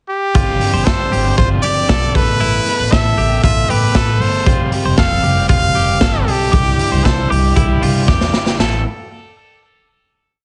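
A brilliant, vibrato-laden trumpet enters at 0.1 s with a scooped-note pickup and opens this restless, wistful jangly indie pop piece in A minor at 116 BPM. A gritty, up-front garage drum kit playing a dance-floor beat with off-beat open hats and an overdriven garage guitar strumming open chord shapes join at 0.3 s. The chorus follows at 0.4 s, adding a thumpy, woody pizzicato upright bass driving eighth notes with slides and a twangy, ringing twelve-string electric guitar figure with harmonic tremolo and digital delay. It moves through G7sus4, Asus2, Fsus2 and Cadd9 until a drum fill at 8.1 s lands on a closing A5 chord at 8.6 s, heard through a heavily compressed, radio-like small room sound.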